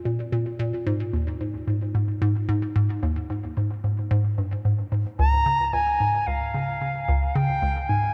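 Ambient music in Db lydian at 111 BPM, cosmic and expansive, cut from a longer piece and moving through Bb5, Ab5 and Db chords. A hollow, bouncy square-wave pluck carries the low riff from the start, detuned and mellow with chorus, tape echo and a moving notch filter, and a reedy wooden flute joins up front at 5.2 s with a pure, tongued melody, its vibrato and rolled-off highs trailing tape echo. A huge ambient reverb and cassette-tape character surround both parts.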